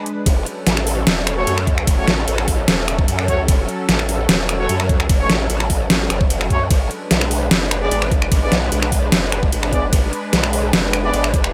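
A growling, wobbling bass with chorus and overdrive sits up front in this chaotic, aggressive heavy wobble dubstep excerpt in F# minor at 149 BPM in half-time, alongside a knocking overdriven kick and a forward drum kit of finger snaps, metallic hats, ride cymbal and deep snare, while a lush detuned supersaw pad pumps under a low-pass filter and a clear brass ensemble enters at 1.4 seconds with delayed stabs, moving from F#m to G#dim at 6.7 seconds in a digital ambience.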